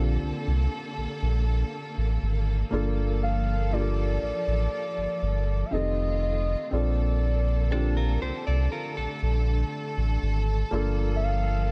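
Moody and longing, this slow contemporary R&B fragment sets a smooth, gliding sine lead, treated with chorus, delay and vibrato, over a deep, full sub bass with an added octave that sits up front. A soft, thick-felt upright piano accompanies beneath while a lush, bowed studio string section holds sustained chords, moving through Bbmaj7, Gm9 and F7 within a dark, warm production. A clean, direct-recorded electric guitar adds picked, compressed arpeggios with delay from 7.7 to 10.4 seconds.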